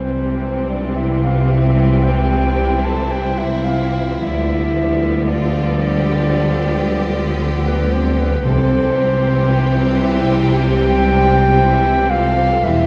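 Lyrical and warm, this slow romantic orchestral passage unfolds with a flexible, rubato pulse, cut from a longer piece. The violin section carries the melody from the background with smooth, even bowing and vibrato, while a dark, roomy solo clarinet sings a second line above it with a soft attack. Beneath them, the viola section adds expressive accompaniment with vibrato and portamento, the mellow French horn section holds sustained chords, and the cello and double bass sections anchor the bass, the basses focused and up front. A second violin line joins at 2.0 seconds with a lush, expressive tone, and a very quiet, close and dry timpani sounds briefly at 8.5 seconds as the harmony settles back home. Heard from further back in a scoring stage, the strings and winds are bathed in a wet, lingering reverb.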